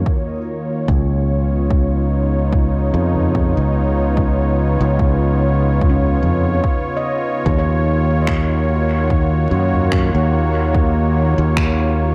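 Ambient dub at an unhurried 73 BPM with a light swing, this spacious, hazy passage cut from a longer piece rests on a smooth, detuned sawtooth pad with chorus holding sustained chords up front over Ebm7 and Db7, while a bright, punchy fingered electric bass sits forward, a deep, overdriven electronic kick carries large-room weight, a soft-mallet kit of finger snaps and toms drifts in at 3.1 s in the background with dub echo, and a very quiet, ringing handpan returns at 5.9 s with mellow, meditative arpeggios, all inside a small room ambience.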